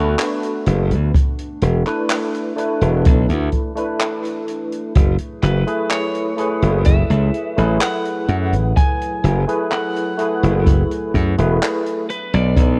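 This short cut from a longer vaporwave piece has the rough, cassette-tape feel of a home demo, with light reverb and a small room around it, and a melancholic, hazy mood in a slow, straight 4/4. A barky tine electric piano sits up front through a combo amp, its chords thickened by ensemble chorus, 12-bit sampler grit and analog delay, and it drops out at 12.1 seconds. Behind it, a warbling, tape-like pad holds dark, detuned chords with a slow attack and long release, blurred by chorus, its own reverb and the same sampler grit. A bright, punchy slap bass with tube saturation anchors the low end alongside an open acoustic jazz kit of handclaps and hi-hat, and a boomy kick joins up front at 1.1 seconds. At 5.4 seconds a lightly driven, picked lead guitar enters with the melody, slightly broken-up and compressed, trailed by tape echo, as the harmony moves from Bm7 through E7sus4 to F#m11.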